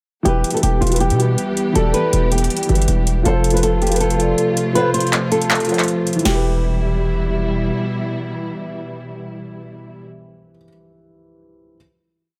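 Hip hop trap in E phrygian at 160 BPM with a half-time feel, this short, menacing piece sets a thumb-plucked flamenco guitar loop over mellow, boxy grand piano chords and a lush, woody string pad bowed sul tasto with vibrato. A punchy 808 bass with long sub notes and pitch slides sits up front beneath a tape-warm analog drum machine carrying a crisp snare, handclaps, crash and metallic hats in fast rolls. The drums stop at 6.3 seconds as the final E minor chord arrives, with guitar and 808 dropping out soon after, the strings sustaining until 10 seconds and the piano lasting until 11.8 seconds in light room reverb.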